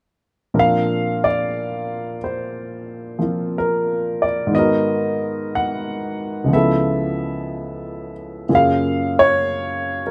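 A gently swung 4/4 pulse at 60 BPM carries this late-night, romantic jazz ballad fragment, where a solo upright piano, woody and intimate with its action noise audible and placed up front in a light reverb, plays from 0.5 to 10.1 seconds across a range from Db2 to Gb5, moving through Bb, Abm7 and an altered Db7 before settling on Gbmaj9.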